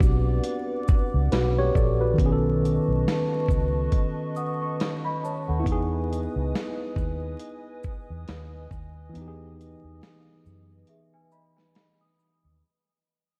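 Cosy and nostalgic, this lo-fi hip hop excerpt drifts at 69 BPM in E major with a swung 16th-note feel, fading out across its full 12.6 seconds. Gritty, compressed sampler-style drums sit up front with a thumpy kick, a medium-tuned snare, hi-hat and shaker, joined by a round, punchy, foam-muted electric bass with a dark, amped tone. A mellow, slightly out-of-tune tine electric piano carries the accompaniment through chords moving from Gmaj7 to B9 and then Emaj7, while a warbling, detuned tape-like pad holds sustained chords above it with chorus and its own reverb. At 4.4 seconds a worn, bell-like celesta with soft felt hammers enters as a sweet second line, wrapped in lush chorus and diffuse ambient delay. A break arrives at 9.1 seconds, and the drums stop at 12.4 seconds, all within a dreamy mix soaked in hall reverb and flecked with vinyl crackle.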